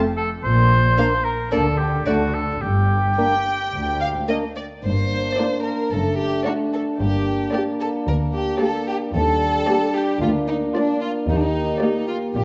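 Quirky and sneaky, this playful, whimsical film cue in G minor moves at 112 BPM in a straight 4/4, cut from a longer piece. A distant, roomy woodwind group of dark clarinet and bassoon, a wooden baroque flute with a pure straight tone, and an oboe with light vibrato opens the cue and falls away by about 4.4 seconds. Bowed chamber strings played sul tasto carry on: violins with a smooth top take the melody over an up-front second violin line, with shadowy violas in the background, woody cellos and soft-attack double basses below. From 4.8 seconds a sombre, remote French horn section holds sustained chords, and the whole recording sits in a wet scoring-stage reverb with a worn, warbling old-cassette character and dulled highs.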